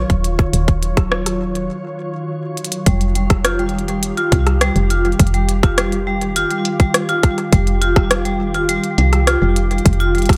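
Melancholic and eerie, this 103 BPM IDM fragment opens on a glassy, chorused FM pad holding an Ebm9 chord over a round, woody FM bass with tube saturation, a tight, tape-warm electronic kick up front, and a glitchy kit of clicky hi-hats and rim clicks through digital delay, then after a break from 1.7 to 2.9 seconds and a drum fill at 2.6 seconds, the harmony shifts to Fsus2 as a ringing, metallic vibraphone enters with delayed arpeggios and fast motor vibrato in a digital ambience.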